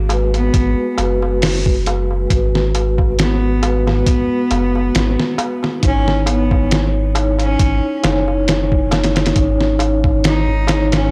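A slow, swung trip hop groove at 68 BPM in G# minor rides on a compressed, pitched-down sampler-style kit with a thumpy kick and gritty, tape-warm snare and hi-hat sitting up front, joined by a crisp metal-shell darbuka in a small room and a deep, round dub sub bass with tube saturation. Soft-mallet vibraphone rings through tremolo, fast motor vibrato and tape echo, airy and metallic, over a shift from G#m7 to C#madd9 at 5.8 seconds. From 0.4 seconds a distant, nasal, earthy bowed cello carries the melody with light vibrato and tape echo, all within a smoky, dark, cassette-gritty excerpt cut from a longer piece.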